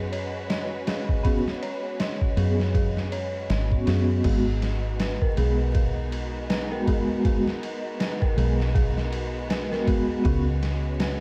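Smoky and hypnotic, this trip hop excerpt puts a muffled, pitched-down sampler drum kit and a round, foam-muted dub bass up front beneath sustained chords from a woody, lush violin section, eerie inharmonic FM bell arpeggios treated with chorus and tape echo, and a mellow soft-mallet vibraphone with tremolo and tape echo that enters at 1.2 seconds, set in a dry, dark mix with vinyl crackle.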